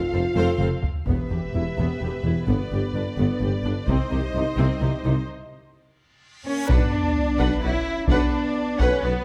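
A taiko ensemble struck with heavy sticks drives this dramatic, epic orchestral film-score passage in triple time, cut from a longer piece, with huge, bright impacts, a reverse cymbal and a sub drop landing at 1.1 seconds and again near the close, after a break at 5.3 seconds. Up front, a rich cello section anchors the bass alongside expressive double basses and a distant, roomy tuba, while two far-off violin sections play the melody and a second line, one smooth and even, the other clear and intense, over warm, close violas with a soft attack and portamento. Dark French horns hold sustained chords in the background, and light reverb surrounds the orchestra.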